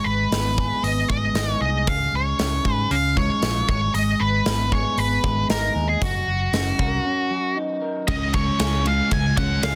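A straight 4/4 pulse at 116 BPM drives this brooding, cathartic stretch of quiet-loud alternative rock in G# dorian, cut from a longer piece. An octave-fuzz lead guitar, dark, distorted and up front, carries the melody from the start, while an electric guitar through a small old amp picks slightly broken-up arpeggios bathed in spring reverb beneath it. A growly, punchy picked bass enters at 0.1 seconds, and a big acoustic rock kit joins at 0.3 seconds with bright cymbals, a medium-tuned snare and a punchy kick across hi-hat and ride. The harmony moves from G#m through C# and D#m7/F#, and at 8.1 seconds, as the chord returns to C#, a thick, warm fuzz guitar comes in with a picked, distorted riff. The mix carries little reverb beyond the arpeggio guitar's spring, and the master is dense and heavily limited in a modern style.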